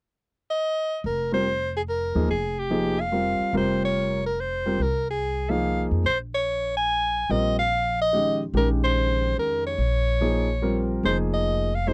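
A breathy soprano saxophone with light vibrato and a soft attack carries the melody up front from 0.5 seconds in this cool, intense modal jazz fragment in F minor, swinging in 3/4 at 144 BPM and tuned to A4 = 441 Hz. A woody, pizzicato upright bass on steel strings joins at 1.0 seconds, and an intimate, natural concert grand piano with deep bass and audible action noise follows at 1.3 seconds, accompanying over Fm11 and Bbm11. The sound is dry and close, in the manner of a 1970s-style studio recording.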